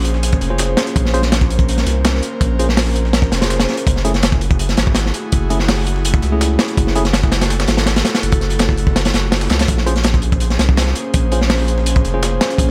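Set in a small room ambience, this dark, frenetic drum and bass and jungle cut from a longer piece runs at 165 BPM in Bb minor, with a crunchy, saturated breakbeat kit up front: a tight kick, a medium-tuned snare and hi-hat with a rolled-off top. Alongside it, also up front, sits a deep, thick, saturated sine sub bass, and further back a very quiet dusty soul sampler-style kit adds a fat snare, hi-hat and tambourine. An airy, breathy pad, detuned and softened with chorus and vintage 12-bit sampler grit, holds Bbm9 and Gbm9 chords, while a clean tine electric piano plays stabs through dub echo, entering at 0.5 s and returning at 9.9 s.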